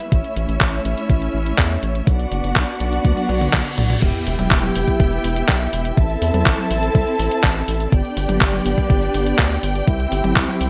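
A straight 4/4 pulse at 123 BPM drives this melodramatic, nostalgic slice of italo disco. A thumpy, overdriven electronic kick pounds beneath a clean 12-bit drum machine of hi-hat, handclaps, toms and crash that sits up front in gated reverb, over a round, deep analog bass that blends square and sine tones, with a filter pluck, fast attack and tube saturation. A dark, lush studio string section bows sustained, woody sul tasto chords with vibrato over A and Bm, until a drum fill at 3.0 s and a background reverse cymbal and sub drop carry the piece into E minor at 4.0 s, where it moves through Em, Am, G and C, all set in bright 1980s-style digital production with light reverb.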